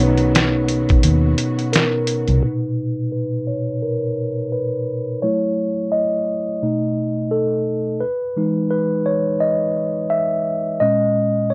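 Cosy and mellow, this lo-fi hip hop excerpt in B major moves at 86 BPM in 4/4 with a gentle swing on the sixteenths. A mellow tine electric piano carries the accompaniment up front, its clean tone heard through built-in speakers and coloured by cassette tape, a low-pass filter and plate reverb. For the opening seconds it is joined by three parts. A lush, bowed string section with vibrato and portamento plays sustained chords. A dark, foam-muted fingered bass has a round, amped tone. A compressed, pitched-down sampler-style drum kit plays hi-hat, thumpy kick and medium-tuned snare, with the kick muted from 1.0 seconds. At 2.4 seconds the strings, bass and drums stop, and the electric piano plays alone until 11.5 seconds, with a filter sweep shaping its sound. The chords move from Bmaj7 through F#m7, B7 and Emaj7 to A#madd11, set in a light room reverb.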